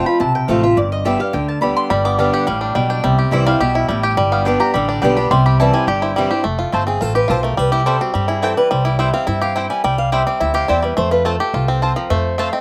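Virtuosic and joyful, this brisk 212 BPM bluegrass cut in C major is anchored by a picked, boxy archtop guitar and a woody upright bass with a growly pizzicato tone, while a double-strung mandolin with slapback echo takes the opening solo before a steel-string acoustic guitar solos from 6.4 seconds, and a twangy fingerpicked banjo, also carrying slapback echo, enters at 1.9 seconds with percussive arpeggios, all captured dry outdoors.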